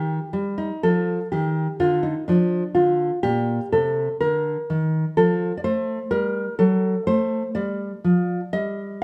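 The rhythm moves freely in rubato over a steady four-beat metre, giving this nine-second excerpt from a longer piece a flowing yet grave character. It is a classical, baroque-style dance for solo nylon-string guitar, tuned to A4 = 445 Hz. The guitar is dark and full-bodied, with a deep classical tone, a thumb-plucked touch, and a range from Bb2 up to Eb5. The harmony moves from Ebadd9 through Bb/D and Cm13 to F#dim, then settles on a bare G5 at 7.6 seconds. Close, detailed microphones place the instrument up front, with light reverb.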